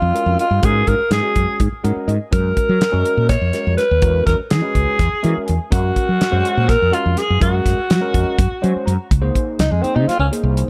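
Electric jazz fusion in a soaring, slick 7/8, where a raspy, growling alto saxophone with vibrato and analog delay carries the melody before breaking into a solo at 9.1 s, over a round, punchy fretless bass, a barky, overdriven tine electric piano through a combo amp with analog chorus adding short fills, and a dry, damped 70s drum kit of tight kick, medium-tuned snare and hi-hat, set in a small room with light reverb in this brief cut from a longer piece.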